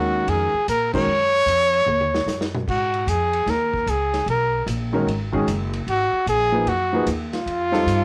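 Searching and spiritual, this short cut from a longer modal jazz piece swings at 150 BPM in Eb minor, resting on an Ebm11 chord before moving to F7 near its close. An up-front trumpet with light vibrato carries the solo melody, while an intimate concert grand piano, its action noise audible, comps briefly, drops out at 1.1 seconds and returns at 4.9 seconds. A woody, growly pizzicato upright bass anchors the low end, and a vintage kit with dark cymbals and a punchy kick enters at 0.3 seconds, marks a band accent and plays a short fill. Trumpet, piano and drums carry a cassette-tape coloring, all within a light home-recorded reverb.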